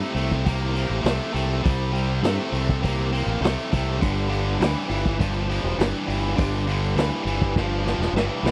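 A full, lightly overdriven tonewheel organ with slow rotary speaker and chorus vibrato holds sustained chords in the background as a bright, double-tracked distorted guitar riff kicks off this driving, swaggering blues rock power trio and southern rock excerpt at 102 BPM in 4/4, quickly joined by an up-front, growling overdriven fingered bass and a vintage acoustic drum kit with a punchy kick, medium-tuned snare and rolled-off top, moving from C to G in G major before a drum fill at 7.6 seconds, all captured in a dry, close 1970s-style studio sound with light reverb.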